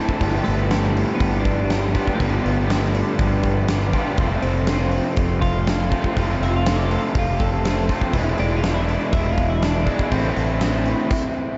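A straight 4/4 pulse at 121 BPM drives this brooding, hazy slice of shoegaze and dream pop, with a huge arena drum kit up front pounding a punchy kick and fat snare beneath bright crash and hi-hat. A growling, overdriven fingered bass sits just as far forward, while a crunchy overdriven guitar riff, its notes trailed by reverse reverb, runs alongside a lo-fi garage guitar riff that adds subtle chorus from the background. Very quietly underneath, a dark, woody fingerpicked twelve-string acoustic guitar shimmers through octave-doubled arpeggios. A clean, twangy twelve-string electric guitar carries the melody through diffuse ambient delay, its compressed tone floating behind the rest. The harmony moves from G7 to F, then E7, settling on Am, and the whole passage is soaked in an enormous reverb with its highs rolled off, giving it a cavernous, murky glow. The bass drops out just before the rest of the band cuts out at 11.1 seconds, and the drums carry on for a brief moment before the lead guitar plays on alone into the stop.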